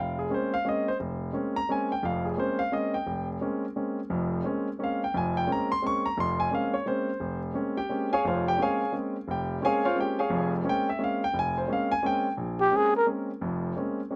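A breathy, dark-toned trumpet, close-miked and up front with a whispered vibrato and soft attack, steps forward for a brief, intimate solo phrase between 12.6 and 13.1 seconds, near the end of this short fragment of a longer jazz piece. Underneath, a warm concert grand piano carries the accompaniment from the very start to 14.2 seconds, spanning a deep bass register up into its high treble. The piano sounds polished and present, with long sustain, audible action noise and a slapback echo. The music swings lightly in a three-beat metre, opening on a Bbm9 chord, and the mood feels spiritual and cool. The recording is dry and open-air, with little reverb.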